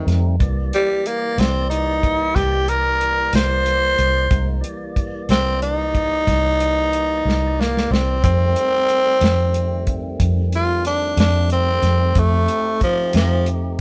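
A raspy, growling tenor saxophone solos up front through this gritty, swaggering slow blues excerpt in 12/8 at 61 BPM, moving from C7 to F7 over a round, punchy foam-muted electric bass, a dark, dry soul drum kit with a fill at 7.3 seconds, and a fat tonewheel organ holding sustained chords with key click through a slow rotary speaker, the band captured live in one room with light reverb.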